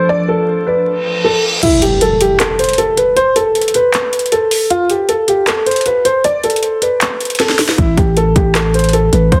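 Trap hip hop in A minor at 156 BPM with a half-time feel, dark and melancholic, this cut from a longer piece is led by a worn, boxy grand piano melody with delay, opening on a Dm chord over a soft, felt-muted upright piano in the background and a glassy FM pad with ensemble chorus. A reverse cymbal leads into an electronic impact as the trap kit enters at 1.6 seconds with sharp snare, metallic hats, handclaps and crash; its hard-clipped kick is held back until a drum fill brings it in with the growling, buzzy 808-style bass on A7(no3) at 7.8 seconds. The dense, heavily limited master sits in a moderate recital hall reverb with vinyl crackle.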